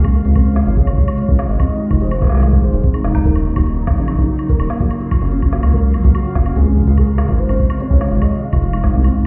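Heard muffled through a wall with a stone room reverb, this cerebral, melancholic IDM excerpt moves at 145 BPM in a straight 4/4 over Dbmaj7, Fm7, Ebm7 and Gbmaj7 chords. A rubbery, saturated acid bass sits up front beside a deep, tape-toned analog kick, while a hollow, flute-like pad pumps under sidechain and a felt-muted upright piano plays boxy, intimate arpeggios through a low-pass filter and delay. An organic electronic kit adds woody snare, smooth hi-hats and woodblock, and a velvety, chorused synth lead with vibrato and dub echo carries the melody from 0.0 to 3.0 s and returns at 6.1 s.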